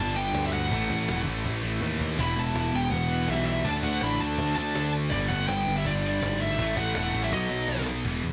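Heavy metal with a relentless, dark mood, built on an up-front, bright high-gain lead guitar melody with distortion and delay, a warmer distorted second lead line in the background, a double-tracked crunchy overdriven riff guitar, two scooped high-gain riff guitars, a growly fuzz-laden picked bass up front, and a woody cajon with soft hands and faint snares that enters at 0.3 seconds and adds fills at 1.8 and 7.7 seconds, all in light reverb in this short cut from a longer piece.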